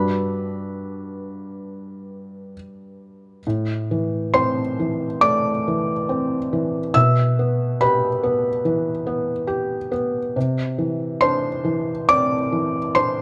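A felt-muted upright piano plays alone throughout this short excerpt, its soft, mellow tone carrying audible action noise and a short sustain that gives it a vintage, intimate character. The music is neoclassical minimalist piano in G major, moving at a rubato 69 BPM in 4/4, with a tender, intimate mood. Its range spans G2 to E6, and the chords move from Gmaj7 to Am at 3.4 seconds, then through Em/B and Cadd9 by 10.4 seconds. Close, detailed microphones place the piano up front, and light reverb lends a gentle sense of space. The passage is cut from a longer piece and ends at 13.2 seconds.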